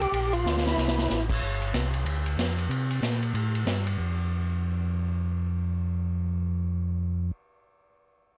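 Soul jazz organ trio fragment, swinging and soulful, in which a fat, lightly overdriven percussive tonewheel organ with chorus vibrato and slow rotary speaker plays a brief melody that stops at 1.3 seconds, a round, dark tonewheel organ bass, also through a slow rotary speaker, carries on up front until 7.3 seconds, and a vintage drum kit with dark cymbals, a punchy kick and 12-bit sampler grit plays a fill before dropping out at 3.9 seconds, in a dry, gritty recording.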